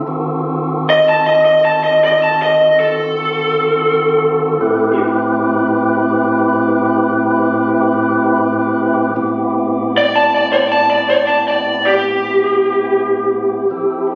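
This slow minor-key blues fragment, pitched in A minor, moves in a 12/8 metre at 53 beats per minute with a straight feel, and its mood is soulful and brooding. A tonewheel organ holds sustained chords from the start, its fat, clean tone carrying vibrato, audible key click and a slow rotary speaker sway. At 0.9 seconds a lead guitar takes the melody through a small cranked amp, sounding dark, overdriven and picked, with a lo-fi edge that sits up front alongside the organ. The harmony rests on a D#dim7 before settling onto Am7 at 4.6 seconds. A moderate plate reverb, room capture on a phone, studio reverb and compression shape the overall sound.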